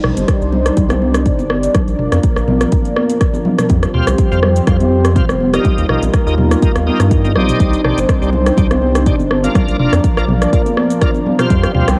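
A punchy, up-front electronic kick drives this warm, earthy afro house excerpt at 123 BPM with a light sixteenth-note swing, alongside metallic hats, rim clicks, shaker and toms from the kit, bright soft-handed congas, a deep round bass and a smooth sawtooth pad pumping through chords from Cmadd9 to Bb, while a lightly overdriven tonewheel organ with key click and slow rotary speaker adds shouting stabs from 3.9 seconds, a very quiet riser appears at 11.9 seconds, and the whole mix carries the hazy grain of a home cassette recording.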